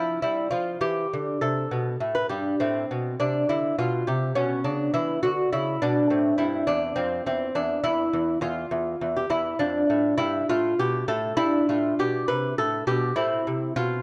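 A solo lute carries this short passage from a longer baroque-style dance, its fingerpicked gut strings sounding bright and delicate, up front in the mix. The piece moves in a flowing 12/8 at about 68 beats per minute counted in dotted quarters, with a rubato feel that gives the phrasing a relaxed, serene quality. Its double courses, some strung in octaves, give the tone a shimmering fullness across a range from E2 up to B4. The harmony opens on C and passes through Am, Bmadd9 and Dm/F before settling through G onto Am at 13.2 seconds. A light reverb and a dark overall production surround the instrument, lending the classical setting a calm, intimate atmosphere.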